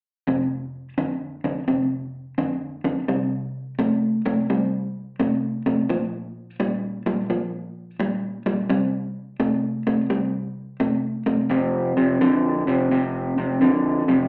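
A lone electric guitar enters at 0.3 s, played by finger through a small old amp, its tone dark, slightly broken-up and compressed, with a slapback echo trailing each note. This is laid-back, gritty blues at 86 BPM in 4/4, swung on the eighth notes and set in F major, with the guitar keeping to a low register from F2 to A3. The solo part moves through power-chord shapes on F, C and B-flat, and a new section begins at 11.5 s, returning to F before the clip ends at 14.3 s. The guitar sits up front, but the sound is lo-fi, captured at a live gig through the venue's PA with a wet club reverb and a dulled top end. It is a short cut from a longer performance.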